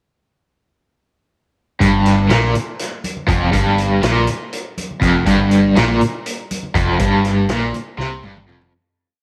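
Psychedelic rock in 7/8 with a straight feel at 242 BPM counted in eighths, this short, complete piece has a hypnotic, hazy mood built on a single riff over an Fsus24 chord. At 1.8 seconds the full band enters together, led by a cranked stack guitar that sits up front, playing a bright, overdriven, double-tracked single-note riff with tremolo between F2 and C3. A growling picked electric bass, overdriven and both direct and amped, doubles that syncopated riff an octave below, between F1 and C2. A vintage drum kit of hi-hat, kick, snare and toms carries the 7/8 groove with a saturated, gritty character, a tight kick, a medium-tuned snare and a rolled-off top, while very quiet congas with a thick skin and hard hands keep an evenly spread pattern until 8.5 seconds. Light reverb and small room ambience frame the sound, and a fade-out beginning at 7.0 seconds closes the piece with a drum fill at its very end.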